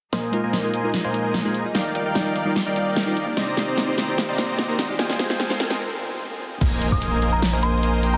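A huge, detuned supersaw drives this euphoric, lush future bass excerpt, its up-front riff pumping against the sidechain while a long filter sweep and delay shape the build-up in a half-time feel. Beneath it, a dubstep kit with a huge snare and metallic hats runs an extended drum fill, while sine-based digital keys with chorus trace glassy chords and a distant, biting string section sustains very quietly in the background. A faint riser climbs from 1.9 seconds, the keys drop out for a short break at 5.8 seconds, and the drop lands at 6.6 seconds with an impact, a knocking electronic kick and a deep, tube-saturated sub bass. A crystalline FM bell then takes the melody, its decaying tones carried on chorus and delay. The whole mix sits in an enormous ambient reverb and is heavily squeezed into a dense, radio-like sound.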